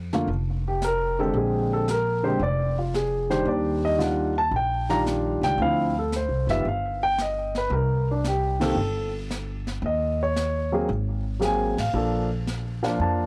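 Swinging eighths at 113 BPM in 4/4 carry this warm, sophisticated jazz piano trio fragment in Bb major, where a woody pizzicato upright bass sits up front beside an intimate grand piano melody with audible action noise and long sustain, airy brushed drums on snare, hi-hat and ride sit further back, the band hits accents at 8.5 and 11.7 seconds, and light reverb over a dry, gritty recording with transformer saturation and cassette tape gives it a hardware-recorded character.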